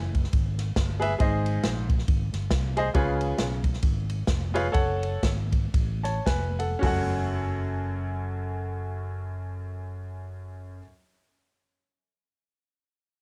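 Uptempo gospel in F# harmonic minor, fervent and soulful, swinging in 4/4 at a tempo that ranges from 103 to 138 BPM and slows from 2.9 to 6.8 seconds. A clear baby grand piano carries the accompaniment up front, intimate and natural, with audible action noise and a cassette-tape colour. Beneath it, a fingered electric bass sounds dark, round and amped, with a punchy attack. A swinging big-band drum kit, airy and polished with a medium-tuned snare and punchy kick, sits up front on hi-hat, ride, snare, kick and toms, also carrying a cassette-tape tint, before dropping out at 7.0 seconds. The chords move from E through G# and C#7 to F#m, and the whole passage, cut from a longer piece, has the small-room ambience of a home recording on cassette.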